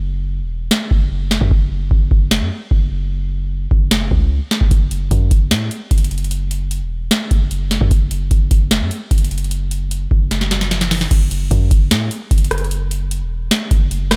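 A booming analog drum machine drives this menacing, melancholic half-time trap excerpt in F# minor at 150 BPM, entering at 0.7 seconds up front with a deep kick, crisp snare, rim click, metallic hi-hats and crash cymbal that carry the roomy character of a large space. Beneath it, a long, sustained 808-style bass holds down the low end with a deep, mellow sine tone that has a fast attack and a decaying tail, sitting up front from the very start. After an opening break, a drum fill at 10.3 seconds leads into a new section at 11.1 seconds, and the overall mix stays mostly dry.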